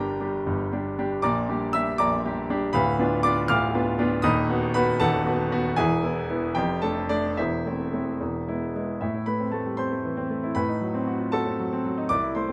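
Classical virtuoso piano study in a stormy, passionate 6/8 with free rubato, played by a solo grand piano of polished, present tone and short sustain, placed up front in a moderate studio reverb and ranging from D1 to F6, as harmonies move from G minor through diminished and dominant chords to a new section at 9.0 s that closes on an A diminished seventh in this fragment cut from a longer piece.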